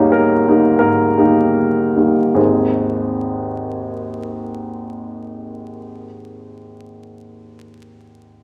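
A clear, woody upright piano sits up front in this brief romantic character piece for solo piano, in Ab major at 86 BPM in 4/4 with a passionate, rubato feel, ranging from Ab1 to Db5. Cut from a longer piece, it opens on an Eb7/Ab chord while slowing down through the first 2.4 seconds, then settles onto Ab as a new section begins and runs to about 7.9 seconds. A large, wet studio reverb surrounds the polished tone, and a layer of vinyl crackle adds an aged patina.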